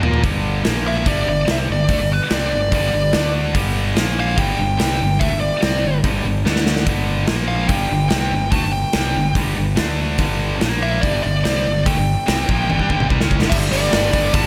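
A nasal lead guitar with a parked wah carries the melody from 0.9 s, its overdriven, slapback-echoed tone riding over a powerful, anthemic hard rock groove at 144 BPM in straight 4/4, cut from a longer piece. Underneath, a scooped high-gain guitar and a tight distorted guitar with slapback echo play power-chord riffs on G, Bb and D in the background, while a growly fuzz bass anchors the low end and a punchy, up-front acoustic drum kit with bright cymbals drops fills around 6.5 s and 12.7 s. A very quiet double-tracked guitar slips in at 13.5 s on a final G chord, and a moderate concert-hall reverb gives the whole mix a big arena sound.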